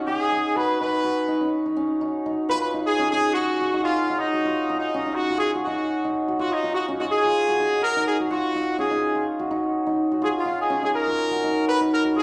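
A straight 4/4 afrobeat groove at 124 BPM in G# dorian drives this intense, hypnotic passage, cut from a longer piece, moving from G#m7 to G#7 at 2.5 seconds. Up front, a shimmering, ringing hammered dulcimer spins arpeggios while a punchy, tight horn section carries the pop-style melody, both parts touched with slapback echo. It sounds like a live gig heard through the venue's PA, with club reverb filling the space.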